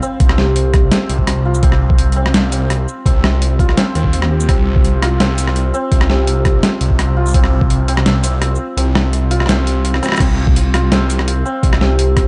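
Dark and heavy, this half-time drum and bass passage is cut from a longer piece and moves with a weighty, unhurried feel. A bright, shimmering santur plays ringing hammered arpeggios through a tape echo, while a mellow vibraphone with soft mallets sits in the background, sounding a single metallic note a few times with slow motor vibrato in a boxy small room. Up front, a thick, swirling detuned saw bass with a fast attack and sustained tone carries a phaser and tube saturation. The drums have a gritty, pitched-down, compressed sampler character: a boom bap kit with a medium-tuned snare, rim click, hi-hat, shaker and crash cymbal, joined by a thumpy, tape-toned electronic kick. The kick stops at 7.7 seconds, a drum fill arrives at 9.9 seconds, and the kick returns at 10.2 seconds. Light reverb and a dark, warm production keep the top end subdued.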